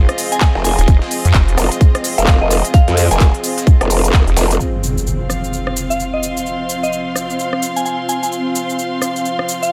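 Bass house at 129 BPM in F minor with a swung, gritty and bouncy feel, this cut opens on a drop where a nasal, formant-filtered wobble bass and a growling, saturated second bass sit up front over a tight electronic kick, a big-room kit of handclaps, crisp hats, rim click and shaker, and a very quiet sampler-style breakbeat kit of snare, hi-hat and tambourine. Beneath them a deep, detuned ambient pad holds sustained chords while a dark, bowed chamber string section adds texture, both with sidechain pumping, and a soft FM synth bell carries a mellow melody through chorus and dub echo. At 4.6 seconds the basses, kick and breakbeat kit have dropped out and an electronic impact hits, leaving the pad, strings, bell and big-room kit to carry the second section in light digital ambience.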